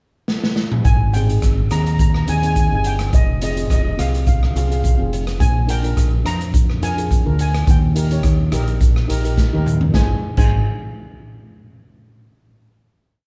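A drum fill on a dark, punchy big-band kit opens this sunny, bouncy calypso at 106 BPM in Ab major, before a shimmering lead steel pan plays a motif-based melody over a round, up-front dub bass figure, a grainy tube shaker, and a second, mellow steel pan playing soft rhythmic triad chords through Abmaj7, Fm, Bb7 and Eb, with another fill at 9.4 seconds leading to a final Ab chord in a small room with moderate reverb.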